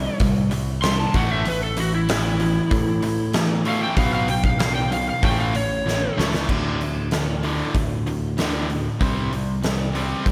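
This swaggering, driving classic rock excerpt in D major at 96 BPM opens with a dark, overdriven slide guitar soloing over a bed of two distorted guitar riffs and a growly, picked electric bass. One riff guitar is tight and bright with slapback echo, while the other is sludgy, warm and very quiet. A huge arena drum kit enters at 0.2 seconds, up front with a fat snare, punchy kick, hi-hat and crash cymbal, its big-room sound giving the track a natural weight. The slide melody, carrying its own slapback echo, runs until 6.2 seconds, and a drum fill from 5.9 seconds leads into a new section at 6.5 seconds where the riffs, bass and drums carry on alone. Light reverb and a small room ambience frame the whole performance.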